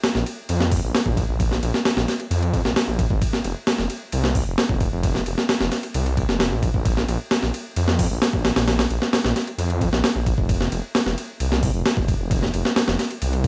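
A straight 4/4 breakbeat groove at 132 BPM drives this raw, swaggering breaks fragment, its sampler-style kit of thumpy kick, medium-tuned snare, hi-hat and ride cymbal sitting up front with overdriven, compressed grit and the feel of a small room. From 0.1 seconds a detuned saw bass joins between F1 and F2, thick and menacing with a beating, sustained tone and a fast attack. The dry hardware sound carries transformer saturation, vinyl crackle and a dulled top end, and the piece is cut from something longer.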